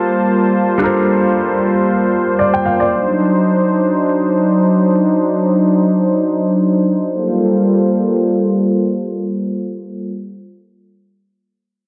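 A dense, heavily limited modern master with light reverb and studio ambience frames this soulful, late-night amapiano fragment in free time and G minor (tuned to A4 = 441 Hz), where a clear, polished baby grand piano sits up front with low-pass filtering as accompaniment until 3.0 s, while a smooth, detuned sawtooth pad with slow attack and chorus holds sustained chords through Gm11, D7b9 and back to Gm11 until 10.1 s, under a filter sweep that runs until 7.1 s.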